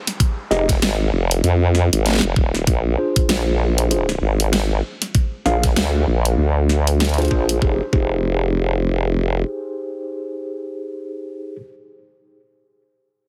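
A knocking, up-front electronic kick and a dubstep kit with a huge snare and hi-hat drive this playful, swaggering glitch hop cut at 97 BPM in F dorian with a 16th-note swing, while a saturated, chorused formant-sweep wobble bass filters its way from 0.0 to 7.6 seconds under mellow tine electric piano stabs pumping with dub echo over Fm7 and Bb7, a very quiet downlifter opens the piece, and the dry mix carries a heavily compressed radio sound.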